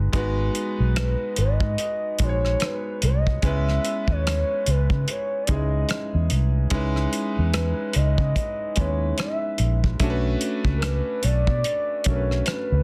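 R&B and neo-soul with a late-night, sultry mood, this excerpt moves at a slow 73 BPM in 4/4 with a swung sixteenth feel, drifting from G#m7 to C#m9 and on to Bm9. A clear concert grand piano with long sustain supplies the accompaniment over a dark, round, foam-muted vintage electric bass and a cloth-damped, thuddy acoustic drum kit of hi-hat, tight kick and rim click, with soft clipping on the snare. From 1.0 s a smooth, detuned sine lead glides through the melody with portamento, vibrato, chorus and slapback echo, all set in light reverb and a dense, heavily limited modern master.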